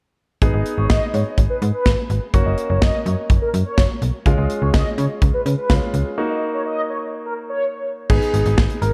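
A straight 4/4 groove from an airy, up-front studio drum kit, with a punchy kick, medium-tuned snare, hi-hat and crash, drives this cool, nocturnal synth-pop excerpt. A snappy FM bass with a metallic attack and a clear, polished grand piano in accompaniment sit beneath a mellow, brassy synth line that is detuned and ring-modulated, with a filter sweep, chorus and analog delay, until 7.7 s. A break begins at 6.2 s, and at 8.1 s a round, gentle, keys-like FM lead with vibrato takes the melody, set in a dark production with moderate hall reverb and small-room ambience.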